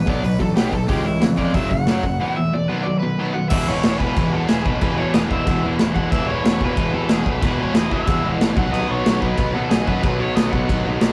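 Punk rock in E major at 184 BPM, energetic and upbeat, where an overdriven electric guitar carries a delayed lead melody that stands out as a solo over the first 3.5 seconds, backed by a bright distorted rhythm guitar riff, a dark, sludgy distorted guitar riff in the background, a growly fuzz-picked electric bass, and a punchy, up-front acoustic rock drum kit with bright cymbals, while a very quiet, biting, double-tracked overdriven guitar riff joins at 3.5 seconds, all heard in a rough rehearsal-room recording with small-room reverb and warm saturation.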